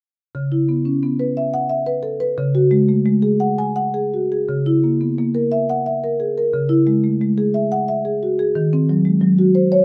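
Heard through a moderate studio reverb, this short fragment of a reflective, hypnotic contemporary classical piece features a solo marimba played with soft mallets, its woody, round and mellow tone sitting up front as it moves freely in a rubato 6/8 from C#m7 through colouring chords such as C#m6 and E69/C# before settling on D#m6 near 8.5 seconds.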